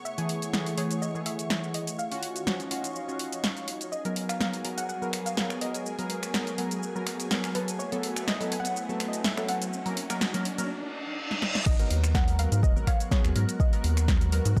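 An overdriven electronic kick drum, deep and placed up front, lands with force at the drop at 11.7 seconds, together with a rubbery, bouncy square bass that pumps against it. This deep house excerpt runs at 124 BPM in 4/4 with a light swing on the sixteenths, and it carries a late-night mood. Before the drop, an overdriven deep house drum kit with a punchy snare, finger snaps, hi-hat, shaker and crash cymbal drives the build-up. Chorused, phased analog keys play round sawtooth stabs through a digital delay. A soft, round pluck carries the melody through analog chorus and dub echo. Underneath sit a hollow, airy, flute-like pad, a warbling, nostalgic tape-like pad, and a lush, warm symphonic violin section with vibrato, all three pumping in the background, while a riser climbs through the build and a reverse cymbal enters at 10.7 seconds. The harmony moves through minor ninth chords from F#m9 to D#m9 and G#m9, and a drum fill leads into the drop on G#m9, all set in a light reverb.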